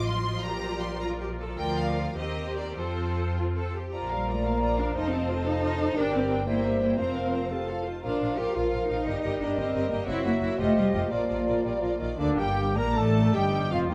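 A classical orchestral passage in 6/8 with a rubato feel, restless and stormy in mood, cut from a longer piece and heard through moderate concert hall reverb. The strings carry it from the start: a clear, intense violin section sings the lush melody with vibrato, while a second violin section lays a smooth, even line in the background, and a clear viola section fills the accompaniment. Underneath, a focused, distant cello section and a rich, expressive double bass section sitting up front form the bass, giving the sound a heavy bowed foundation. At 3.9 seconds the winds join: a small, pure-toned flute group and a warm solo clarinet add second lines, a clear bassoon joins the accompaniment, and a tight, mellow horn section holds sustained chords in the background. A mellow cor anglais with a soft attack slips in at 12.2 seconds for a brief roomy second line, as the harmony moves from a darker Gb7 through F9 and Bb toward Gm and a closing Ebadd9.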